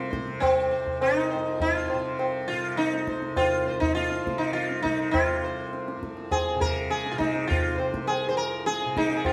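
A straight 5/4 pulse at 102 BPM carries this brief, meditative fragment of Hindustani classical music in raga malkauns on C, cut from a longer performance and steeped in longing. The plectrum-plucked sitar sits up front with the melody, its round, buzzing tone ringing with sympathetic strings, while the softly plucked tanpura holds a bright, shimmering drone beneath and the low-tuned tabla, entering at 0.1 s, adds short-ringing strokes. The ensemble plays live together in one room, wrapped in the reverb of a stone chamber.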